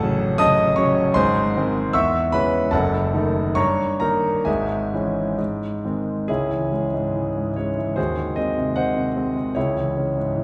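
A clear grand piano opens alone on an F#m/A chord, setting a passionate, brooding romantic character piece in C# minor. The tempo moves between 65 and 82 BPM in 2/4, with a rubato feel that lets the phrases breathe. The piano spans F#1 to E6, and its natural, intimate tone sits up front, with the action noise of the instrument plainly audible. A wet scoring stage reverb surrounds it, lending the sense of hearing it from further back in the room. The opening section passes through G#, C#m/E and D#dim/F# before settling on G# at 5.4 seconds. A second section begins at 6.3 seconds on C#m, moves through G#7/D# and returns to C#m at 9.6 seconds, where this passage, cut from a longer piece, comes to a close.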